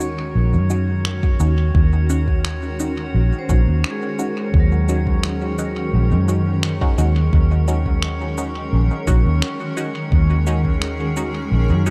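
A dark, round, foam-muted electric bass sits up front in this deep, meditative ambient dub piece at 86 BPM in Eb minor, resting on an Ebm7 chord, with a deep electronic kick entering at 1.2 s and stopping at 10.8 s, tape-warm electronic cabasa and finger snaps carrying dub echo, a cloudy, evolving granular pad holding sustained chords in its own reverb, muted, detuned sawtooth chord stabs colored by phaser and dub echo, a metallic, ringing hard-mallet vibraphone playing echoing arpeggios in the background, and a glassy, drifting harmonics texture with chorus hovering on Db5, all set in a digital ambience.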